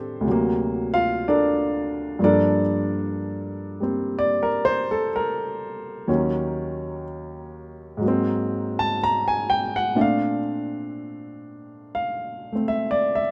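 A slow swing at 62 BPM in 4/4, with eighth notes swung at 66%, sets a late-night mood in this short solo jazz excerpt cut from a longer piece. A grand piano plays alone for the full 13.3 seconds, ranging from D2 up to A#5. Its tone is warm and intimate, placed up front with a natural character, and the noise of its action is audible. The harmony moves through D7b13, Gm9, Ebm7, G#9 and Bbmaj9. Light reverb surrounds the piano, keeping the setting close.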